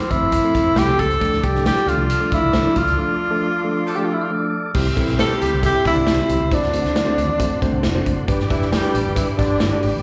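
A straight 4/4 groove at 136 BPM drives this uplifting 1960s-style soul fragment in C major, with an up-front big-band drum kit of punchy kick, medium-tuned snare, hi-hat and crash anchoring a dark, round, foam-muted fingered electric bass. A breathy, whispered tenor saxophone with scooped notes and vibrato carries the melody over a clean, mellow tine electric piano and a percussive tonewheel organ sustaining chords through a fast rotary speaker in the background, while a glockenspiel with soft plastic mallets rings bell-like until about 4.3 seconds. A band accent and break land at 3.0 seconds, a soft-attack horn section with vibrato enters as a warm second line at 3.9 seconds, and the whole band sounds as a live gig through a club PA with moderate reverb.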